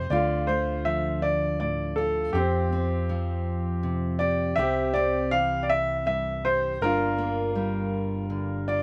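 A bright upright piano sits up front with the melody, its woody tone, long sustain and audible action noise lending this tender, intimate acoustic folk-pop ballad a close, personal quality. Beneath it, a fingerpicked steel-string acoustic guitar with fresh strings and a touch of finger squeak, and a round, punchy fingered electric bass play through the whole 8.8-second clip, moving unhurriedly in 6/8 at 54 BPM over Dm, Fsus2, C and Gm7. The recording was made outdoors with little reverb, so the sound is dry and immediate.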